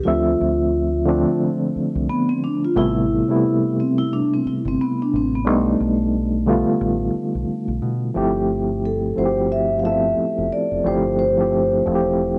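This introspective, late-night slice of neo-soul R&B opens at 0.0 s with a soft-mallet vibraphone carrying the melody over a reedy, mellow electric piano whose fast tremolo pulses through its built-in speakers, sitting up front in the mix. A moment later a deep, round fingered electric bass enters underneath, dark and direct from the amp, holding the low end as the track moves with a lightly swung sixteenth-note feel. The vibraphone rings with a metallic shimmer and a slow motor vibrato, while both it and the clean electric piano carry the soft grain of cassette tape. The harmony moves through lush Dm9, Am9 and B7alt chords before settling onto a suspended G13sus4 at 8.1 s. A light small-room reverb and the intimate character of a home cassette recording give this cut from a longer piece a close, private atmosphere.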